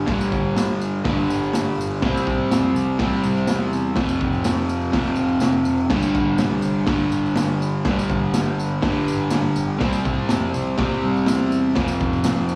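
A crunchy, overdriven electric guitar riff and a growling picked electric bass kick off this raw, swaggering garage rock excerpt at 123 BPM in a straight 4/4, with a raw acoustic drum kit arriving at 0.1 seconds and a jingly tambourine just behind at 0.2 seconds. The bright, double-tracked guitar sits up front, picking its riff over a cycle of G5, C and F5 that repeats through the single section. Beneath it, the bass is direct and amped, overdriven and punchy, adding a bright, growling edge to the low end. The drums bring a boomy kick, a medium-tuned snare, hi-hat and crash cymbal, all saturated by cassette tape into a pumping, rolled-off sound. The tambourine stays in the background with a warm small-room tone, and the whole recording carries the cramped ambience of a home cassette session in a small room.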